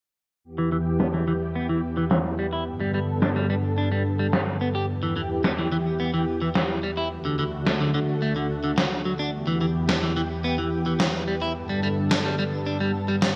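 Nocturnal and moody, this synthwave excerpt moves at 108 BPM in a straight 4/4, centred on E minor and cut from a longer piece. An analog string pad opens at 0.4 seconds with sustained chords, its silky, wave-folded sawtooth and triangle tone given a slow attack, long release, vibrato and ensemble chorus, all washed in shimmer reverb. An electric guitar at the edge of break-up joins at 0.6 seconds with a picked, twangy riff, its slightly broken-up sound shaped by subtle chorus, a low-pass filter, digital delay and shimmer reverb, with a filter sweep running across its whole length. An up-front, sampler-style electronic snare drum enters at 1.0 seconds, carrying gated reverb and a low-pass filter, and a filter sweep passes over the drum as well. The harmony cycles through Em, Gadd9, Em, D, Em and Gadd9, and the whole excerpt sits in a wet scoring-stage reverb with a digital ambience.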